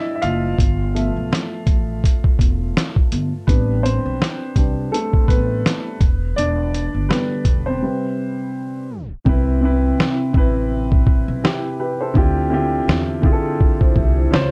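A dark, mellow upright piano sits up front in this hazy, nostalgic lo-fi hip hop fragment, its smooth, vintage tone softened by cassette tape colour, a low-pass filter and long sustain as it carries a featured solo over chords such as a rootless Am11, G13 and Em7. Beneath it, a woody pizzicato upright bass on steel strings holds the low end, while a compressed, pitched-down sampler-style drum kit, re-recorded in a small room, adds a thumpy kick, a medium-tuned snare and hi-hats with a lazy swung feel. A break arrives at 7.8 seconds, capped by a tape stop at 8.9 seconds, and from 9.3 seconds the hi-hats drop out as the harmony shifts to Cmaj7 and then Dm11. At 13.8 seconds a vibraphone played with soft mallets slips in, its metallic, ringing tone boxed in, slow motor vibrato shimmering through tape echo. Light reverb and a dusky production give the whole track a cosy, worn-in glow.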